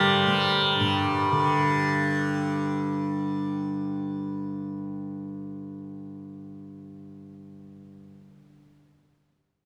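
Indian classical music in a solemn, longing mood at 125 BPM in 5/4, where a hammered, ringing santur carries a brief melody between G4 and D5 for its first 3.0 seconds over a bright, buzzing tanpura drone that sits up front from G2 to G3 and sounds until 8.5 seconds, all heard in a reverberant recital hall as a short cut from a longer piece.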